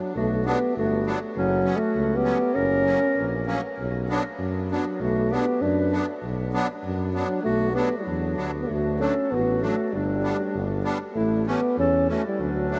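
Heard through a huge, echoing reverb that suggests a vast hall, this jolly, festive alpine dance-band excerpt in a straight two-beat metre places a mellow euphonium melody up front, played with vibrato and a soft attack. A clarinet adds a quieter second line, a smooth-topped tuba carries the bass from 0.2 seconds, and a close-miked, dry musette accordion with a reedy, shimmering tone fills in the accompaniment from 0.5 seconds. At 8.7 seconds the music shifts from its minor opening into a brighter major passage.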